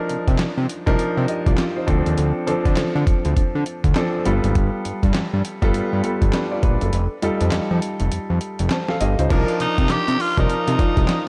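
Bouncy and punchy, this new jack swing R&B cut moves at 101 BPM in 4/4 with a 60% swing on the sixteenths, sitting in C dorian and tuned slightly low to A4 = 438 Hz. A clear, polished baby grand piano carries the accompaniment with a slapback echo, while a fat analog bass with a saturated sawtooth edge and a filter sweep holds down the low end, both up front. A dusty, sampler-style drum kit drives the groove with a thumpy kick, medium-tuned snare, handclaps, hi-hat and crash cymbal, its compressed, gritty, tape-warm character giving the beat weight, though the kick drops out from 6.9 to 9.3 seconds. The chords move from Cm11 through Dm7, G9 and F9 before returning to Cm11 at 9.3 seconds, where a very quiet studio string section adds bowed, gut-string stabs. A raspy tenor saxophone then steps in with an edgy solo melody at 9.6 seconds, colored by vibrato and slapback echo, as the fragment plays out under light reverb.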